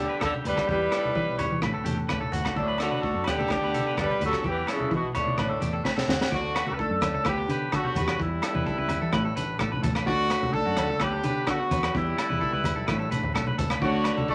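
A thin layer of vinyl crackle and a moderate studio reverb frame this sunny, carefree highlife guitar band piece in D major, moving at 128 BPM in a straight 4/4. Up front, a clear, tight horn section carries the melody with light vibrato and a smooth top, while an edgy tenor saxophone plays a low second line beneath it until 5.8 seconds, when a short drum fill leads into the next section. A twangy, slightly broken-up electric guitar picks arpeggios in a high register, and a fingerpicked flamenco guitar with fresh strings sits in the background. The fingered electric bass is round, dark and foam-muted, with a punchy attack. The crunchy breakbeat kit sounds gritty and saturated with a rolled-off top, a high-tuned snare, rim clicks and a punchy kick, joined by low-tuned congas played with soft hands and ringing agogo bells kept quietly behind. The chords cycle steadily through G/D, Em, Asus4 and D, and the saxophone returns briefly at 13.8 seconds as this cut from a longer piece ends.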